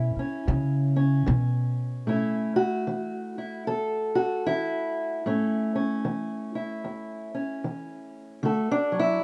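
A boxy, old-stringed parlour steel-string acoustic guitar fingerpicks a laid-back, rollicking melody in this dry, close, 1970s-style acoustic country blues excerpt at 75 BPM in swung 4/4 and A major, accompanied by an up-front pizzicato upright bass from 0.0 to 2.0 seconds, before the harmony settles on A and moves to D at 8.4 seconds.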